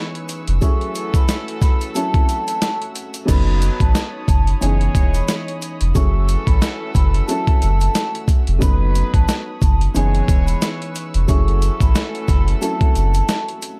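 Boom-bap hip-hop in F# dorian at 90 BPM with a 16th-note swing, this moody, gritty excerpt sets a dusty, overdriven sampler-style drum kit with a thumpy kick and up-front presence against a deep, round sub bass, while a dark, woody upright piano with audible action noise and a cassette-tape tint plays the accompaniment. Clear jazz-style horn stabs with tape echo and a ringing vibraphone melody played with soft mallets sit over distant, nasal string chords and a grainy tube shaker in the background. The harmony cycles through C#m9, F#m9 and B9/F# in a small room with a dark production.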